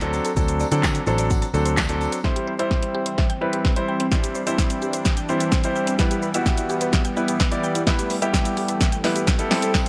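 A straight pulse drives this confident dance-pop excerpt, with a layered house drum kit up front: punchy kick and snare, bright hi-hats, handclaps and shaker, all bathed in gated reverb. A concert grand piano with audible action noise and long sustain carries the accompaniment with sidechain pumping, while a dark, foam-muted electric bass with a round, amped tone plays alongside it only until 2.1 seconds. A woody, FM-style mallet pluck spins arpeggios in the background through chorus and delay, and a distant, jingly tambourine sits very quietly in a large room at the start and again at the close. From 2.2 seconds a soft, detuned supersaw spreads smooth, evolving sustained chords drenched in lush chorus as the track moves from D7 to C and then E minor, and a drum fill runs through a build-up to the end. A barely audible riser appears at 9.7 seconds, capping a bright, 1980s-style digital production with light reverb.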